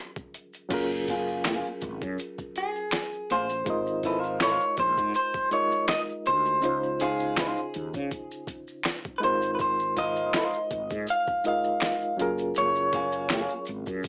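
R&B with a neo-soul lean, this soulful, relaxed passage, cut from a longer piece, moves at 81 BPM in 4/4 with a light sixteenth-note swing in Ab major, drifting through lush chords such as Gbmaj9, Ab69 and Dbmaj9. A reedy, barky electric piano opens the accompaniment, lightly overdriven and shimmering with fast tremolo through its built-in speakers, and a sampler-style boom bap kit joins at 0.2 s, pitched down and gritty with a thumpy kick, medium-tuned snare, hi-hat, crash and finger snaps, sitting up front with a tape-warm, compressed feel. Maracas and a group handclap add a small-room acoustic layer, while a mellow fretless bass enters at 0.7 s, round and direct, coated in lush chorus. A slightly broken-up, picked electric guitar carries a compressed second line, and at 2.6 s the lead arrives on a fingered guitar through a small old amp, lo-fi and up front with slapback echo. Moderate studio ambience and a small-speaker character give the whole piece an intimate, boxy glow.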